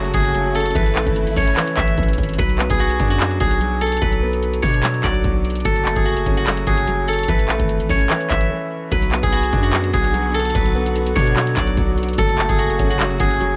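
A bright, silvery steel-string zither, played with fingerpicks and ringing through a digital delay, carries the wistful yet triumphant melody up front in this half-time trap excerpt at 147 BPM, moving through F#m, A and Bm. A clear, polished concert grand piano supports it, while a booming, dry analog drum machine with a deep kick, metallic hats and handclaps sits up front over a heavy, aggressive distorted 808-style bass. A dark, woody symphonic string section bows lush chords with vibrato in the distance, dropping out after 2.4 seconds and returning at 8.9 seconds just after a brief break.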